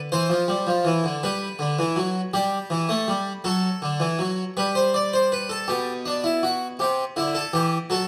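A brilliant, airy French-style harpsichord with three sets of strings sits up front as the solo voice in this lively yet stately baroque-style two-part invention in C major, moving at 54 BPM in a straight 6/8 through a brief passage cut from a longer piece, with its plucked, full tone framed by close, detailed microphones and a moderate stone-room reverb.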